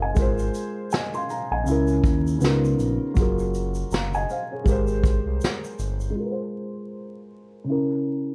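A felt-muted upright piano provides the accompaniment in this dreamy, mellow lo-fi hip hop excerpt, its soft, boxy tone thickened by cassette tape character and a low-pass filter, playing up front through chords such as Ab69, Dbm6 and Gbmaj9 in Ab mixolydian at 80 BPM with a swung 16th-note feel. A smooth, dark synth bass with detuned sawtooth and triangle layers, vibrato and portamento glides beneath it alongside a vintage brush drum kit of punchy kick, medium-tuned snare, hi-hat and shaker with a rolled-off top, both dropping out around 6.2 seconds. From there the piano carries on alone under a filter sweep until 8.3 seconds, all set in light reverb with vinyl crackle.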